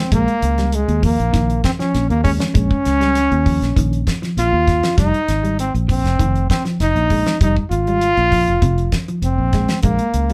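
Afrobeat at 99 BPM in F minor, intense and defiant, this short cut from a longer piece puts a clear, up-front solo trombone with light vibrato and scooped notes over a dark, slightly broken-up electric guitar playing fingered arpeggios in the background, a round, foam-muted fingered electric bass, and a dry, damped 70s drum kit with a fat snare and tight kick, all moving from Bbm7 to Fm11 in a small room where the band plays live together.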